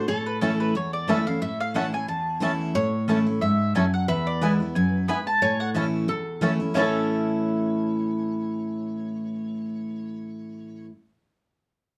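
A rustic, lively bluegrass fragment in A major opens at a quick 180 BPM, with a round, double-strung mandolin carrying the melody over a bright, full-bodied dreadnought guitar picking an up-front accompaniment, while a nasal, metallic lap resonator slide guitar adds a second line. From 0.4 seconds a twangy, fingerpicked banjo joins the melody from the background and a second, woody mandolin adds stabs, all set in a small room with a dark production as the harmony moves from A to E and back to A.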